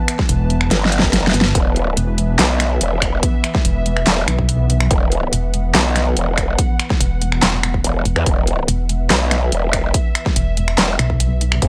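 Heavy wobble dubstep at 143 BPM in a half-time 4/4 feel, this menacing, aggressive excerpt pairs a growling, formant-filtered bass and a dark, detuned pulsing pluck wobble bass, both saturated with chorus and overdrive, against a punchy electronic kick and an overdriven dubstep kit of finger snaps, handclaps, hi-hat and a huge snare, with a drum fill from 0.7 to 1.6 seconds. Meanwhile, a bright, morphing wavetable pad holds sustained chords in the background with ensemble chorus, reverb and sidechain pumping, opening on an E5 chord in a digital ambience.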